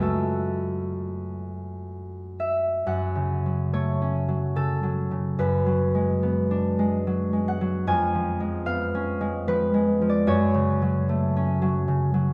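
A dark production set in a wet stone room with 1.4 s of reverb frames a bright, ringing concert harp, fingerpicked and placed up front as the only voice from 0.0 to 12.3 s. This wistful, mysterious classical fragment, cut from a longer piece, moves in 3/4 with a rubato feel between 59 and 76 BPM. In F# minor, the harp spans E#2 to G#5, passing from F#m through G#m7b5/F# and C#7/E# before returning to F#m at 10.3 s.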